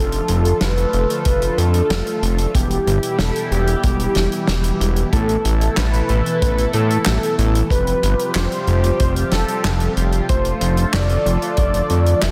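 Synthwave at 93 BPM in a straight 4/4, this nocturnal, nostalgic excerpt from a longer piece moves through Dm/F, Em, Asus2 and Fsus2 before returning to Dm/F. A velvety, smooth synth lead carries the melody between G4 and E5, its detuned tone colored by chorus, vibrato, cassette tape character and tape echo. Beneath it, a swirling, warbling analog pad holds sustained chords through phaser and chorus with sidechain pumping, while dark, round synth brass stabs sit in the background with ring modulation and a filter sweep. A fat, thick analog bass with tube saturation and a plucky filter sits up front, pumping with the sidechain. A natural, small-room acoustic kit of handclaps, hi-hat and medium-tuned snare enters at 0.1 s, joined by a punchy kick from 1.3 s, all set in light reverb within a dense, heavily limited master.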